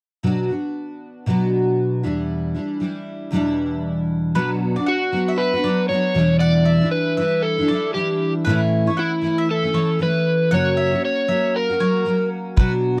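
A double-tracked, full-bodied steel-string acoustic guitar opens this wistful, tender acoustic pop excerpt in B minor at 117 BPM with a light sixteenth-note swing, joined at 4.4 seconds by bright, round mandolin arpeggios and at 4.9 seconds by an up-front overdriven slide guitar melody, moving through Bm, Em7, A and F# before a single punchy kick drum lands at 12.6 seconds, all captured in a dry, close 1970s-style studio sound with light reverb.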